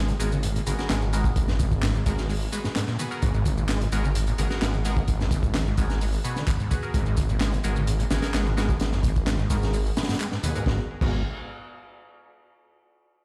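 Breakbeat at 129 BPM in G# minor, this funky, energetic excerpt from a longer piece rides a single G#m9 chord through a drop that runs to 10.7 seconds. A thick, menacing detuned saw bass with tube saturation sits up front beside a crunchy, punchy breakbeat kit with a high-tuned snare and dark cymbals, while a squelchy, resonant acid bass riff with chorus and delay and a layered electronic shaker and handclaps stay in the background. A nasal, band-passed chord stab, bright with phaser and delay, sounds over it all, and the whole mix plays back through a big sound system in a bare stone room.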